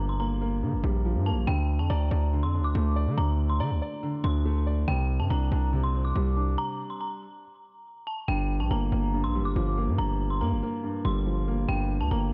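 A heavy, saturated 808-style bass sits up front in this cold, ominous drill excerpt at 141 BPM with a half-time feel in G minor, beneath an eerie, inharmonic synth bell melody treated with chorus, phaser and delay and a soft, felt-muted upright piano accompaniment moving through Gm7, D5 and Csus2, all in a dark studio reverb, with a stop from 6.6 to 8.3 seconds before the music returns to Gm7.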